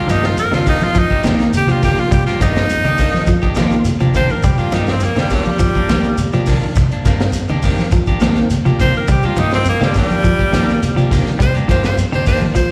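Afrobeat at 103 BPM in C minor, this funky, hypnotic excerpt from a longer piece rides a single Cm9 chord as an up-front, bright tenor saxophone solos with vibrato over stabs from a slightly broken-up electric guitar, twangy clean guitar arpeggios, a fat, key-clicking tonewheel organ through a slow rotary speaker, a round, punchy dub bass, a gritty, saturated breakbeat kit with a high-tuned snare, and background low-tuned congas and a grainy shekere, all heard as a live gig through the venue's PA in a recital hall.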